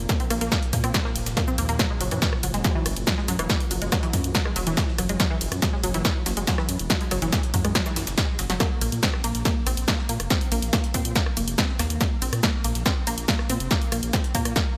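Driving peak-time techno with a relentless mood, where a punchy electronic kick and an up-front analog drum machine of hi-hat, ride, rim click and snare sit over a very quiet, gritty breakbeat kit of hi-hat, shaker and snare, while a rumbling detuned saw bass pumps against the kick beneath a lush, saturated unison pluck riff with chorus and delay, and a deep, moody pad drone hangs underneath until 8.6 seconds, just after a drum fill, all set in light digital reverb with a bright 1980s-style sheen.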